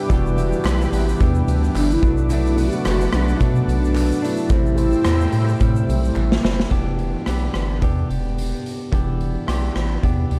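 A deep, round analog bass and a saturated, gritty garage drum kit sit up front in this lonely, hazy indie bedroom-pop fragment in E minor at 109 BPM with a light 16th-note swing, as a warbling, detuned lead carries the nostalgic melody through tape echo, a bright, direct clean electric guitar adds compressed picked accompaniment, a barky overdriven tine electric piano with tremolo sits in the background, a smooth vintage pad holds sustained chords, and distant, hollow group handclaps linger behind, until a drum fill at 6.2 seconds leads into a sparser passage from 6.7 seconds where only guitar, bass and drums continue in the dark, lightly reverberant mix.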